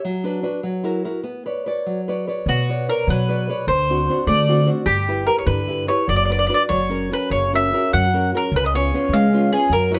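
An Italian folk serenade in 6/8, wistful and romantic, opens with a bright, fingerpicked nylon-string guitar alone until, at 2.5 seconds, a picked, double-strung mandolin takes the up-front melody with a woody tone while a pizzicato upright bass adds a warm low line, all heard together in a moderately reverberant room in this brief cut from a longer piece.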